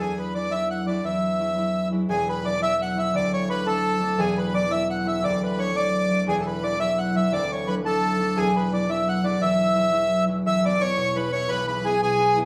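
Accordion and concert harp start together in this bright, rollicking Celtic jig, a short cut from a longer piece in a straight 6/8 at 115 BPM, counted in dotted quarters, in E mixolydian and tuned a touch high at A4 = 441 Hz. The accordion carries the melody up front, its reedy, full voice given a boxy small-room color and a slapback echo. Beneath it, the fingerpicked concert harp supplies the accompaniment from deep bass notes up into the middle register, its strings ringing clearly and also placed close. The harmony rocks between Eadd9 and D for most of the passage, settling onto a plain E chord when a new section arrives at 10.5 seconds. The two players sound as if they share one room, wrapped in a wet but fairly short studio reverb.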